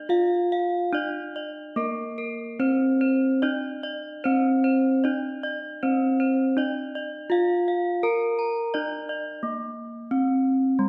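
This gamelan passage, cut from a longer piece, moves at 72-88 BPM in a straight 4/4, tuned slightly low with A4 at 438 Hz, and its mood is shimmering and serene. Two bronze metallophones of the gamelan type, both struck with horn mallets, make up the ensemble. The lower one carries the melody, sitting up front with a bright, airy, ringing tone. The second plays arpeggios in a higher register, sitting mid-forward in the mix with a metallic brilliance of its own. The arpeggios stop at 9.4 seconds as a new section begins, leaving the melody instrument to continue alone until 10.9 seconds, all bathed in the lingering reverb of a recital hall.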